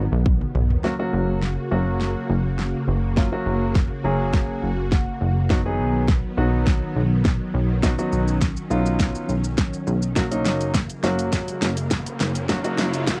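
Punchy, layered electronic pop drums with a fat snare drive this upbeat, euphoric dance-pop excerpt at 103 BPM in F# major, alongside a funky, plucky sawtooth analog bass and a polished baby grand piano accompaniment that adds a fill at 3.8 seconds, all over vintage string-machine viola chords with ensemble chorus, while bass, piano and strings pump with the sidechain, the music builds through a filter sweep over B and F# chords, a background riser enters at 10.9 seconds, and the dry, close 1970s-style sound carries little reverb.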